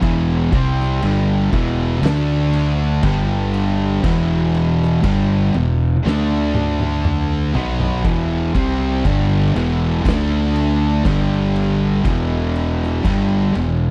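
A dry, close 1970s-style studio sound frames this sludgy, hypnotic stretch of stoner and doom metal at 60 BPM in E minor, cut from a longer piece, with a growly overdriven fingered bass sitting up front. Two thick fuzz guitars churn in the background while a bright, double-tracked, tight distorted guitar adds a riff over E minor, D5 and G5. An oversized low-tuned drum kit with a boomy kick, fat snare, toms and crash rumbles darkly behind them and breaks into a fill from 6.0 to 8.0 seconds.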